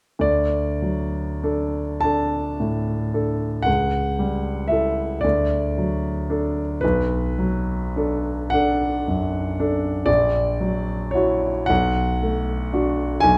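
Romantic classical nocturne for solo grand piano, serene and tender, moving slowly in 6/8 at 33-40 BPM with a flexible rubato feel in D major. The piano sounds smooth and vintage, placed up front and spanning A#1 to A5, with a moderate recital hall reverb around it. Across this brief passage cut from a longer piece, the harmony moves from D through A7/C# and Bm7 to F#7/A#, settling on Bm7 at 11.7 seconds before the piano stops at 13.4 seconds.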